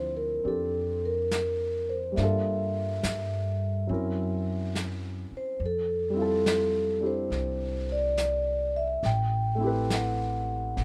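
The recording is dry and close, with little reverb around the players, and the vibraphone and upright bass sit up front. This short excerpt of a jazz ballad moves at an unhurried swing, wistful and intimate in mood. The vibraphone carries the melody with soft mallets and its motor off, its metallic, ringing tone kept mellow. A warm concert grand piano supplies the accompaniment with a deep low end, and the pizzicato upright bass, strung with steel strings, has a woody, warm character. A vintage brush drum kit joins at 0.5 s, its brushed snare and hi-hat dark and smooth with a rolled-off top, as if heard in a small room. The harmony moves from Dm9 through Gm9 and F#7#11 to a longer Fmaj9, reaching Am7 at 9.0 s.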